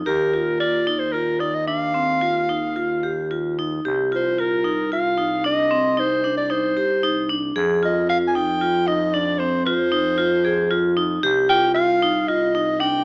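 Heard through a thin AM radio filter with a light reverb, this excerpt of contemporary chamber music moves at 113 BPM in an uneven 7/4, its mood hypnotic and restless as the harmony drifts from Ebsus2 to C minor and F minor. A ringing, up-front vibraphone struck with hard mallets spins arpeggios while a thick, growling FM bass holds the low end. A breathy, close-miked soprano saxophone takes a mellow jazz-style solo with vibrato.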